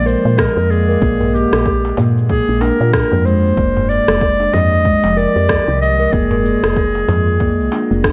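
Warm and earthy, this short cut from a longer organic downtempo piece moves with a relaxed, swung sixteenth-note feel in four. Up front, a smooth-topped clarinet carries the melody in a classical style, its line touched with delay, while a steel tongue drum struck with firm rubber mallets rings out pure, bright arpeggios that also trail into delay. Beneath them, a dark, warbling tape-like pad holds sustained chords in the background, its detuned, nostalgic lo-fi tone shaped by chorus, phaser and sidechain pumping, and a soft, round, woody FM bass with a fast attack and decaying tone pumps along with it. The rhythm comes from an overdriven electronic shaker and rim click and a deep clay-shell darbuka sitting in the background, joined by a punchy, layered electronic kick from 0.4 seconds. The harmony shifts from Bb7 to Fm9 at 3.6 seconds, all set in a light, digital ambience.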